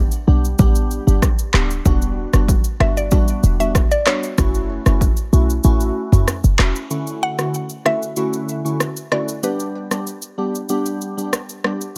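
Afrobeats excerpt at 95 BPM in a straight 4/4, with a sunny, breezy mood. A short 808-style bass sits up front from the start, tight and sine-based with a fast attack, and it drops out at 6.7 seconds. A deep house drum kit of handclaps, punchy kick, rim click, shaker and toms carries the groove throughout, with the kick muted briefly before the second section begins at 6.9 seconds. Glassy, airy digital keys with a detuned, chorused shimmer and a filter sweep hold the chords, moving from G through Em7 and F#m7 to Dmaj7 and back to G. At 2.8 seconds a woody, mallet-like synth pluck takes the melody, its round, percussive FM tone colored by chorus, phaser and digital delay. A digital ambience surrounds the mix.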